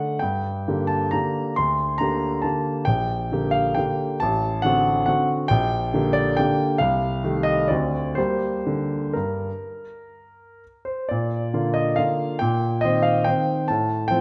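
A warm grand piano plays alone throughout this short classical waltz, its polished, present tone sitting up front with long sustain. The mood is elegant and nostalgic, with a lilting three-beat feel that breathes freely in rubato. The opening stretch circles a minor-key harmony, settling back home at 8.2 seconds before the music lifts into a major-key passage at 11.1 seconds. The piano spans a generous range, from deep bass notes up into the treble. A moderate recital hall reverb gives the sound a natural sense of space, and the passage is cut from a longer piece, ending at 14.2 seconds.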